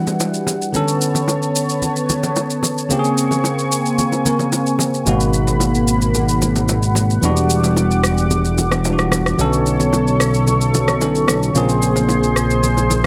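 A barky, bell-like tine electric piano and a smooth, detuned analog pad with chorus open this soulful, late-night amapiano piece over a barely audible downlifter, before an electronic shaker and rim click set in along with soft-handed bongos and congas in the background, and a fat, wave-folded analog bass with a filter sweep arrives up front at 5.1 seconds beneath the lush minor-ninth chords, all under a light reverb.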